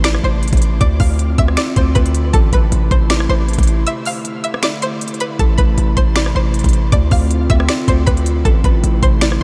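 A half-time 4/4 trap groove at 157 BPM in A minor drives this hard-hitting, menacing hip hop excerpt, where up-front trap drums with a knocking kick, sharp snare, crisp hats, finger snaps and rim clicks sit over a punchy, heavy 808-style bass, while a bright, twangy resonator pluck with chorus and analog delay carries the melody above a warbling, lo-fi, detuned pad of dark sustained chords moving through Am, Dm7 and E7sus4, with a barely audible impact at the start and a break from 3.9 to 5.4 seconds, all in a lightly reverberant room.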